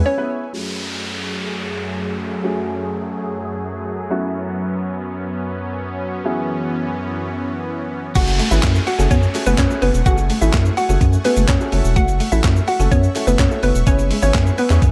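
A driving, confident dance-pop cut that opens on a dark, mellow baby grand piano with audible action noise and soft, detuned supersaw chords, both pumping under a low-pass filter, while a downlifter falls through a filter-sweep build over chords moving from F#madd9 to C#m7/F#. At 8.2 seconds the drop lands with a thick, saturated sine sub bass up front, a crisp 8-bit drum machine with a thumpy kick and tape-warm character, a hollow, bouncy square-wave pluck melody carrying chorus and delay, and a clean picked electric guitar riff sitting in the background. Group handclaps lie barely audible beneath the beat, all within a dark production with light reverb.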